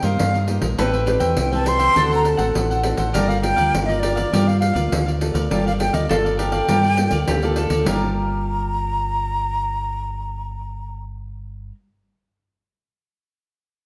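Samba and choro in G minor at 102 BPM, bittersweet and nostalgic, cut from a longer piece, where a breathy, up-front silver concert flute with vibrato and a soft attack carries the melody over a round, double-strung mandolin second line, a crisp picked cavaquinho and a fingerpicked classical nylon-string guitar with audible finger squeak, all anchored by a deep, dark dub electric bass and a jingly pandeiro that drops out at 8.0 seconds as the music moves from Cm7 through D7 to Gm9 and settles on Gm7, the whole bathed in a wet, large studio reverb.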